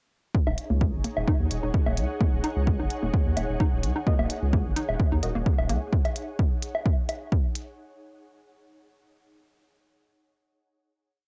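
A four-on-the-floor electronic kick, punchy and tape-warm, drives this complete minimal techno piece at 129 BPM in Eb minor, with a light swing on the 16ths and clicky, overdriven closed hi-hats alongside it. A low woodblock adds clicks and blips in cross rhythm through an analog delay, while a thick, saturated sine sub bass rolls a staccato groove up front, pumping against the kick. A hollow, bouncy square-wave pluck repeats a 10-step sequence that drifts against the bar, coloured by chorus, delay and cassette-tape grain, as a filter sweep runs through the synth line. Behind them an ethereal pad warbles through slowly shifting chords with ensemble chorus and built-in reverb, and at 4.1 seconds a muted, phased dub chord stab echoes sparsely in the background, one shape moved in parallel. The mood is sparse and clinical, the home cassette recording is dry, and the drums carry on to about 7.7 seconds after the other parts fall away.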